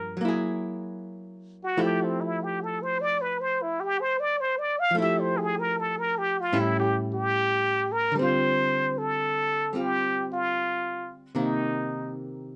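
A tender, intimate jazz ballad at 75 BPM with a swung feel, set in F major before turning to D minor at 8.1 s, cut from a longer piece. A trumpet with a plunger mute carries the melody up front, its breathy, wah-wah tone colored by light vibrato and scooped notes, and it drops out at 12.1 s. A clean, dark hollow-body archtop guitar, miked and amplified, picks the accompaniment through extended chords, all captured with close, detailed microphones and light reverb.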